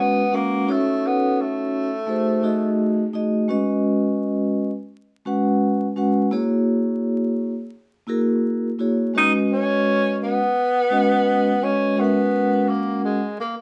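A breathy, whispered tenor saxophone and a ringing, metallic vibraphone played with soft mallets and a slow motor vibrato open this cool, mellow 85 BPM hip hop excerpt in B major with a swung sixteenth feel, the saxophone's subtone and scooped notes sounding intimate yet roomy as it drops out at 3.2 seconds and returns at 9.2 seconds over the up-front vibraphone's chords, from G#m7 through C#sus2 and F#7 to Bmaj9, all captured as a band playing live in one room with moderate studio reverb and a layer of vinyl crackle.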